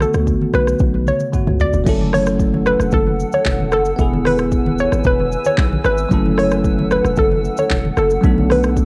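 A hollow, bouncy square-wave pluck carries the melody over bell-like tine electric piano with phaser, a punchy 808-style bass, a deep-kicked afro-pop kit with smooth hats, handclaps, shaker and a drum fill from 0.8 to 1.9 seconds, and low-tuned congas in the background, before a blurred granular cloud pad enters at 2.6 seconds in this hypnotic, sultry 113 BPM afrobeats excerpt in F# minor, moving through Bm7, F#m7 and E with a cassette-tape haze and digital ambience.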